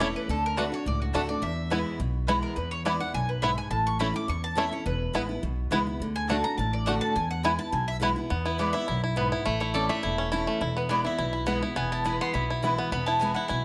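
Bluegrass at a lively, joyful clip, this fragment from a longer piece sets a picked, double-strung lead mandolin up front over twangy fingerpicked banjo arpeggios, a second mandolin's stabs in the background, a picked steel-string guitar with old strings and a dark, woody pizzicato upright bass, all in a moderate large studio reverb and close, detailed sound, with the mandolin taking a solo from 8.3 seconds.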